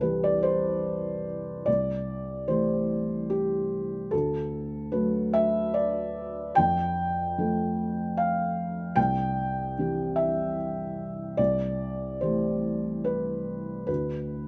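Wistful and melancholic, this short excerpt of neoclassical minimalist piano drifts at 74 BPM in 3/4 with a rubato feel, rooted in A minor. A single felt-muted upright piano carries the whole passage alone from 0.0 to 14.5 seconds, its tone soft, dark and intimate, with the thick felt giving each note a hushed, rounded edge. The instrument sits up front in a light reverb, spanning C2 to G5. The harmony moves through C, Am7/C, D and F before returning to C and Am7/C, then falls away to a chordless close at 13.9 seconds. The result is a mellow, private-sounding miniature that feels lifted from a longer piece.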